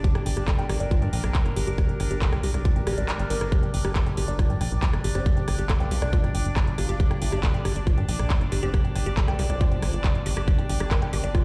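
This psychedelic trance excerpt sounds as if it were played on a big sound system in a bare room, with a large studio reverb around a fairly dry mix. It is driving and hypnotic, in G minor at 138 BPM in a straight 4/4. A tight, up-front electronic kick anchors the beat alongside a layered electronic kit of handclaps, rim clicks and metallic, tape-warm hi-hats. A punchy, saturated sequencer bass carries the low end, while a woody, wave-folded pluck plays a dark, percussive riff through chorus and dub echo. Alongside them, a nasal, resonant drone holds sustained chords with moving overtones and sidechain pumping. A faint electronic swell appears at 2.8 s, the kick briefly drops out at 3.1 s, and a compressed formant-sweep wobble bass enters in the background at 5.2 s, coated in lush chorus and delay.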